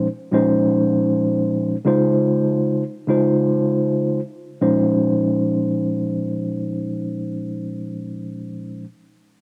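A dark, moody hip hop fragment in free time and B-flat minor, cut from a longer piece, featuring a solo, mellow tine electric piano played up front from Bb2 to C5, moving from Bbm11 to Dbmaj7 and back to Bbm11 at 4.6 seconds, its clean tone heard through built-in speakers and shaped by a cassette tape effect and high- and low-pass filtering, all set in light reverb and digital ambience with the intimate feel of a home cassette recording.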